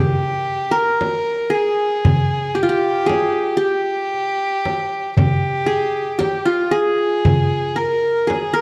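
This Arabic maqam ensemble piece is a short cut from a longer work, soulful and melancholic in mood, moving in 10/8 at 115 BPM counted in eighths with a straight feel. The up-front qanun carries the melody from the opening, its plectrum-plucked triple strings giving a bright-edged shimmer between F4 and Bb4. Sitting close beside it in the same range, a single intimate violin plays a second line, bowed sul tasto with an airy tone, a soft attack and light vibrato. A clay-shell darbuka with natural skin joins at 0.5 seconds, struck with soft hands in a live-room sound, and a frame drum follows at 1.0 seconds, played with hard hands and given a compressed, saturated character. The production is dark and warm overall, set in a moderate scoring-stage reverb with a 1.9-second decay.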